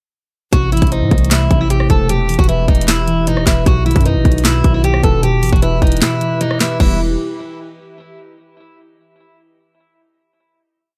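This dry, brooding, hard-hitting trap hip hop piece in E harmonic minor moves at 153 BPM with a half-time feel, as a full-bodied picked steel-string acoustic guitar loops a melody through tape echo over muted, felt-like synth keys playing a dark eighth-note arpeggio, a warbling, nostalgic tape-like pad sustaining chords in the background from 1.0 seconds, a punchy 808-style bass with long sliding sub notes following the kick, and an up-front trap kit of hard-clipped kick, sharp snare layered with claps, rim clicks, crash and bright hats with fast rolls, before a brief break at 6.0 seconds leads to a final chord at 6.8 seconds.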